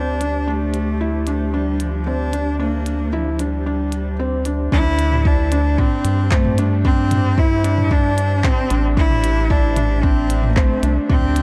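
Moving and intimate, this excerpt of piano and strings electronica moves at 113 BPM in a straight 4/4, with a bright, biting solo cello carrying the melody through tape echo over a soft felt-muted upright piano riff with audible action noise, and a round analog bass pumping under a blurred granular cloud pad in the background. A clicky minimal drum kit of handclaps, hi-hat and toms enters at 0.2 seconds, and at 4.7 seconds the drop arrives as a deep, layered electronic kick joins and the harmony shifts from D9sus4 to D7(no3). The production is dark, with light reverb and digital ambience.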